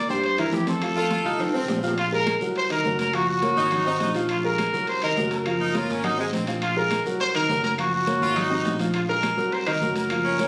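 A salsa groove at 207 BPM in straight 4/4 runs through this passionate, danceable fragment, with bright, damped congas, ringing metal-shell timbales, a raspy guiro and very quiet, saturated woody claves set behind a round, dark fingered electric bass, and a drum fill arrives at 1.4 seconds. Up front, a punchy trumpet carries the melody with vibrato and a roomy, distant tone, while a clear saxophone section adds a second line from 1.0 seconds and a boxy grand piano with audible action noise and long sustain fills in the harmony. After opening on C and F, the music settles from 2.0 seconds into a repeating cycle of Ab9/Bb, Cm7b5, Gbmaj7, Ab7 and Bb5, heard through light reverb in a phone recording made in the room.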